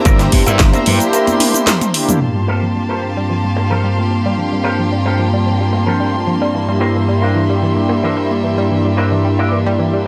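A smooth, detuned analog pad and a lush, vibrato-rich violin section with 12-bit sampler grit open this groovy, sleek nu-disco excerpt at 111 BPM in G dorian, joined at once by a twangy, envelope-filtered guitar riff under a filter sweep, a growly slap bass and punchy electronic kick that both drop out within the first second, a house drum kit with a cracking snare up front, and soft-handed congas in the background, until a drum fill leads at 2.2 seconds into a Gm11 passage where a round, wave-folded analog pluck arpeggio with tape echo enters and filter sweeps move across the pad and the pluck, the mix sitting in light digital ambience.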